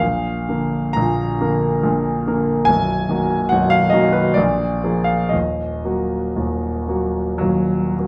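Set in a moderate recital-hall reverb, a warm, polished grand piano sits up front in this melancholic, yearning excerpt from a romantic classical nocturne, moving in a rubato 3/4 at 51-73 BPM in E-flat minor and ranging from B0 to Bb5 as its harmony passes from Bb through Bmaj7 and Bb7 to settle on Ebm at 5.3 seconds.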